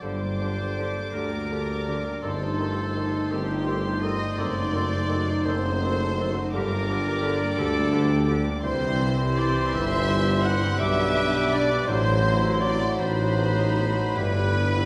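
From the first moment, a symphony orchestra plays a melancholic, solemn slow romantic movement in G minor at 56 BPM in a rubato 6/8: a pure, floating violin section carries the high melody over second lines from an airy flute section, a rich second violin section, a close oboe and a distant clarinet, while a bassoon, a very quiet viola section, soft-edged French horn chords, ringing harp arpeggios and remote trumpet stabs fill the middle, and a dark cello section, a mellow tuba and a double bass section anchor the bass, with the bowed string sections played sul tasto and the whole ensemble bathed in a lush scoring-stage reverb.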